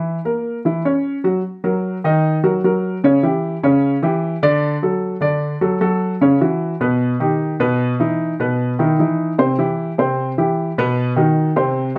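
A baby grand piano opens alone on a Gb7 chord, playing a lively, danceable jazz passage taken from a longer piece. The piano is the only part throughout the 12 seconds. It has a warm, natural tone with short sustain, sits up front in the mix, and spans from B2 to D#5. A slapback echo trails its notes. At 1.4 seconds a new section begins, moving through D#m, C#dim, D, Baug and C before landing on B. A moderate studio reverb and a dark, warm production surround the solo.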